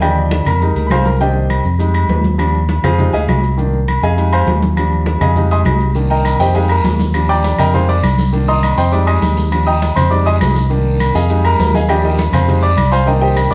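A brisk, straight 4/4 pulse at 202 BPM drives this salsa passage, cut from a longer piece and built for dancing. Up front, a clear concert grand piano takes the solo throughout, intimate and polished, with audible action noise, deep bass and long sustain, moving through a looping cycle of Ebmaj7, Fm7, Cm7 and Fm7. A dark, round, amped fingered electric bass sits just as close beneath it. The percussion bed mixes ringing metal-shell agogo bells and timbales with bright, hard-handed, vintage-toned congas, woody claves and grainy, mellow maracas further in the background, and a raspy guiro joins at 5.9 seconds. The whole band is heard from further back in a wet, large studio space, giving the groove a roomy, lively sheen.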